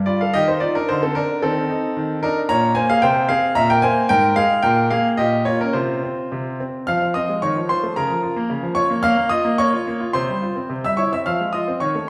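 A clear grand piano, up front and natural in tone with long sustain, carries this short excerpt of a classical-period sonatina alone from start to finish, reaching from Ab2 up to F6. The mood is serious and dramatic, set in F minor at 110 BPM in 2/4, with a rubato feel that lets the pulse breathe. The opening section moves through shifting harmonies, including Bb minor and a C7 over Bb, before settling on a Csus4. A second section begins at 6.9 seconds on F minor, passes through F7 and Bb minor colours, and resolves from Csus4 to C and back to F minor by 11.3 seconds. A wet recital-hall reverb with a 1.3-second decay surrounds the instrument, giving the sound the spacious feel of a church or concert hall. The passage is cut from a longer piece and ends at 12.1 seconds.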